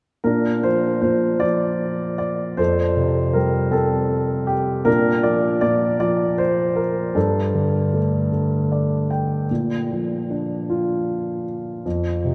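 Peaceful and warm, this short classical excerpt for solo piano moves in a lyrical, rubato 6/8 at about 52 dotted-quarter beats per minute in B-flat major, tuned slightly low at A4 = 438 Hz. A dark baby grand carries everything alone from 0.2 to 12.3 seconds, ranging from F2 up to G5 with a mellow, long-sustaining tone placed up front. The harmony rests on B-flat and drifts through Fadd9 and Gsus2 before returning home at 9.5 seconds. A brief piano fill between 8.3 and 9.5 seconds adds a touch of ornament just before that return. The whole phrase sits in a vast, echoing space, with a wet cathedral reverb of 4.8 seconds letting each chord hang in the air.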